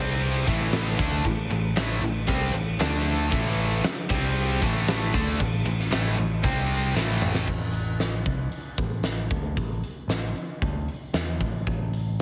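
A huge arena drum kit sits up front with a fat snare and punchy kick, driving this menacing, heavy hard rock cut at 115 BPM in A minor, with a fill at 7.0 seconds. Two bright, overdriven, double-tracked stack guitars, one set in the background, pick a riff over Am, D5, A5 and C5 until 7.5 seconds, while a round, amped picked bass holds the low end. After the guitars stop, bass and drums carry on alone to 12.2 seconds, all under a heavily compressed radio sound with light small-room reverb.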